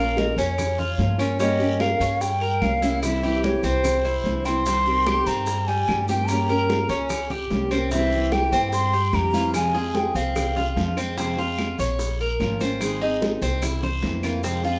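A breathy, hollow jazz flute carries the melody of this sultry, danceable Cuban son and guajira excerpt at 147 BPM, singing with vibrato and a soft attack until 11.0 seconds, falling silent during a drum fill. Beneath it, an up-front tres picks metallic double-string arpeggios, a fingerpicked nylon-string guitar adds accompaniment with audible finger squeak, and a thumpy, dark pizzicato upright bass sits forward over a minor-leaning chord progression. Bright high-tuned congas, tight bongos, raspy guiro, grainy maracas and woody claves stay in the background of a moderately reverberant large studio.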